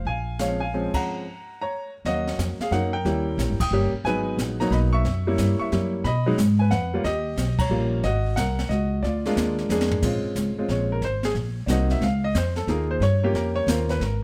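A late-night, moody jazz piano trio excerpt in a brisk 3/4 swing at 181 BPM, moving from Eb minor to Bb minor, where an intimate, up-front grand piano with audible action noise carries the melody over woody pizzicato upright bass and a small-room brushed kit with dark cymbals and a boomy kick, the band hitting a stop from 1.1 to 2.1 seconds before a drum fill launches the piano solo at 10.0 seconds in light reverb.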